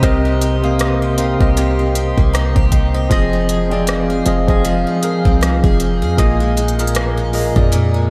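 A dreamy, reverb-soaked mix set in a cathedral-sized space opens this late-night, longing excerpt of contemporary R&B, with a gentle 16th-note swing. Up front, a clean tine electric piano carries the accompaniment through its built-in speakers, while a bright, boxy picked steel-string acoustic guitar plays arpeggios dressed in lush chorus and tape echo. Beneath them, a deep, boomy 808-style bass with a sine core and a noise layer sits alongside a smooth R&B drum kit whose electronic, produced sound has a knocking kick, smooth hi-hats and rim clicks, re-recorded in a large room and ending at 7.9 s. In the background, a moody, mellow ambient pad of detuned sawtooth unison with a sub octave holds sustained chords, its slow attack and long release carried by chorus, built-in reverb and sidechain pumping. A glassy, crystalline wavetable pluck adds a barely audible, evolving digital texture with a filter sweep until 6.0 s, as the harmony moves from Cm7 to Fm7 and then Bb7sus4.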